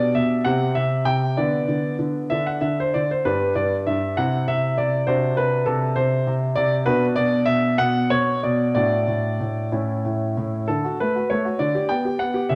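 A bright, brilliant grand piano plays alone, up front with an open tone and long sustain across G2 to G5, in this elegant, graceful classical-period sonatina excerpt in a rubato 6/8 at roughly 61-68 BPM, moving through chords such as Cadd9 and D7/C before settling into D major from 6.9 s and closing on D and G/D, all carried by the wet bloom of a recital hall within a dark, warm production.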